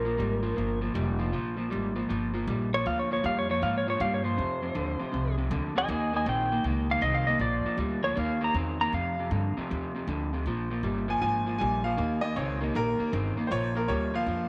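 A clean, dark lap steel guitar carries the melody up front, its compressed, fingered slide lines shaped by volume swells and a slapback echo, playing a rollicking solo until it drops out at 9.3 seconds. This is a swaggering electric blues shuffle in Bb mixolydian at 158 BPM in 4/4, with a swing feel on the eighth notes. Beneath it, an electric guitar through a small old amp holds down a slightly broken-up, picked riff, sitting up front in the mix, while an upright bass with steel strings plays woody, pizzicato lines low in the range. At 11.1 seconds a bright upright piano enters for a solo, brilliant and polished, with long sustain and its own slapback echo. A moderate plate reverb gives the performance a sense of space, and the piece is cut from a longer recording.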